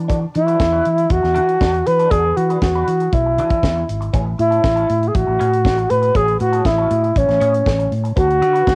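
This short disco cut has the home-taped character of a cassette recording, set in a light reverb. At 119 BPM in a straight 4/4, the mood is driving and glamorous, moving from E9sus4 to Amaj9 and reaching D6 at 8.2 seconds. A tight funk drum kit sits up front with a high-tuned snare, a tight kick and hi-hat, sounding natural in a small room, while a punchy, amped fingered electric bass holds the low end beside it. Further back, a clean electric guitar plays picked, twangy, scooped accompaniment colored by wah and tremolo. The reedy alto flute carries the melody from 0.4 seconds, prominent in the mix, with a crisp attack, vibrato, rolled-off highs and an analog delay trailing behind it.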